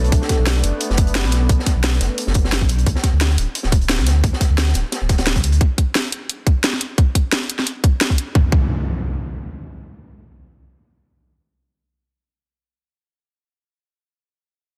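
Liquid drum and bass at 175 BPM with a light 16th-note swing, this dreamy, lush fragment opens on a Bm9 chord: a very quiet, hollow, woody clarinet-like lead with vibrato sounds only until 0.8 seconds, while a thick, detuned unison pad with chorus, phaser and sidechain pumping holds chords until 2.8 seconds over a round, sine-like sub bass that continues to 5.6 seconds. A gritty, dark breakbeat kit with a high-tuned snare and rolled-off top plays alongside a tight, overdriven electronic kick and a garage kit with a cracking snare, both up front in a dense, heavily limited mix. A downlifter and impact flash briefly at the very start and return at 8.4 seconds, carrying the cut into its final stretch after the chords give way.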